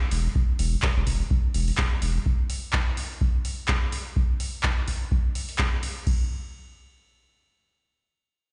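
Gritty and driving, this swung acid house fragment from a longer track opens with a thick, saturated sine sub bass that pumps up front until 2.2 seconds, alongside an electro drum machine's metallic hi-hats, handclaps and crash cymbal, while a deep analog kick joins up front at 0.4 seconds, all sounding as if played on a big sound system in a bare room with a large studio reverb and a dulled top end.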